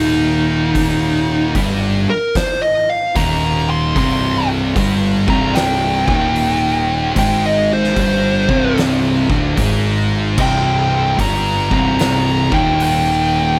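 A dark, fuzz-soaked lead guitar opens this brooding stoner and doom metal excerpt at once, playing an up-front solo melody from Eb4 to C6 over a C minor chord. Beneath it, three distorted rhythm guitars grind out a low riff in the background: two thick fuzz guitars, one shadowy and one mellow in tone, and a bright, scooped, double-tracked high-gain guitar. A growly, overdriven fuzz bass is picked down at the very bottom of the range, C1 to Ab1. At 0.8 s an oversized, low-tuned acoustic drum kit joins with a punchy kick, fat snare, hi-hat and dark crash cymbals, its gritty, saturated sound filling a bright stone room with a pumping ambience until 13.0 s. The tempo is a slow 75 BPM in 4/4 with a moderate swing on the eighth notes, giving the ominous groove a lurching, lumbering feel, and a light reverb lends the whole a touch of space.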